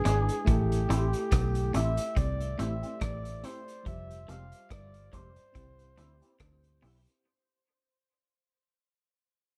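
A lightly swung lovers rock groove rides on a vintage drum kit with a punchy kick, hi-hat and rim click in a pumping small room, anchored by a round, foam-muted electric bass up front, in this sweet, smooth fragment cut from a longer piece that fades out throughout. A breathy flugelhorn carries the melody with vibrato and tape echo over a worn, slightly out-of-tune tine electric piano with medium tremolo, clean envelope-filtered guitar stabs thickened by ensemble chorus, and a bright, picked guitar riff with dub echo sitting in the background. The chords move from Am7 to Fmadd9 to Cmaj7 under light reverb and a dark, warm production.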